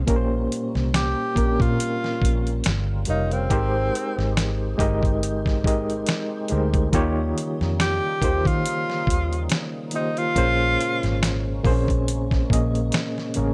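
A lightly swung sixteenth-note groove from a gritty, compressed sampler-style drum kit with a thumpy kick and fat snare drives this introspective, soulful neo-soul R&B excerpt, as a round, foam-muted electric bass sits beneath a barky, overdriven electric piano with fast tremolo, a very quiet tonewheel organ holds sustained chords through a slow rotary speaker, and a breathy, intimate tenor saxophone with scooped notes and slapback echo sings the melody until 11.5 s.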